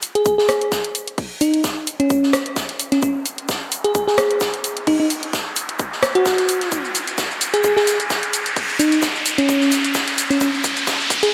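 A bell-like FM electric piano with a sparkling, warbling vintage chorus and digital delay leads this bouncy, swaggering bass house build-up at 130 BPM with a swung 16th-note feel, over an overdriven, up-front garage drum kit of hi-hat, rim click and shaker, a distant, roomy soft-mallet kit with a medium-tuned snare, a punchy layered electronic kick and an electronic riser that runs throughout, all set in a lush hall reverb, with a drum fill arriving at 6.7 seconds in this short cut from a longer piece.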